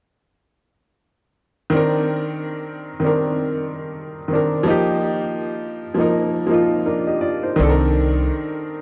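A dreamy mix soaked in a lush hall reverb frames this nostalgic, melancholic lo-fi hip hop excerpt in C minor, moving at 82 BPM in 4/4 with a gentle swing on the 16ths. An intimate upright piano, softened by cassette tape and a low-pass filter, carries the accompaniment from 1.7 s through Cm9 and F9sus4 chords, its action noise audible and its tone natural and up front. At 7.6 s, as the harmony returns to Cm9, a pizzicato upright bass with steel strings adds a dark, thumpy, woody low C.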